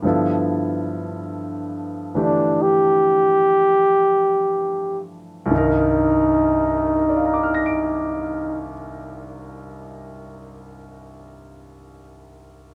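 A concert grand piano opens this wistful, smoky jazz ballad excerpt, its deep bass and natural tone set close in a dry, intimate room. The tempo hovers between 38 and 49 BPM in a swung 4/4, and it slows down through the first 5.5 seconds. A bucket-muted trumpet takes the solo melody from 2.2 to 8.6 seconds, dark, veiled and breathy, with soft attacks and scooped, whispered notes sitting louder than the piano, while the harmony moves from G13 to Cm9 at 5.5 seconds and the piano carries on to 12.7 seconds.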